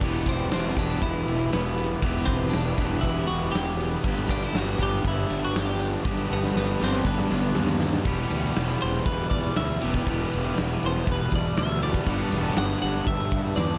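The huge arena drum kit stands out up front with punchy kick and bright cymbals, driving this hazy, brooding shoegaze and dream pop rock excerpt at 119 BPM in E minor, where a thick, dark fuzz guitar with chorus, a biting overdriven guitar with reverse reverb, a growly fuzz bass and a clean, compressed twelve-string melody with slapback echo blend with an ethereal, very quiet pad, while a jingly tambourine plays until 7.9 seconds and a drum fill leads into the second section at 8.1 seconds.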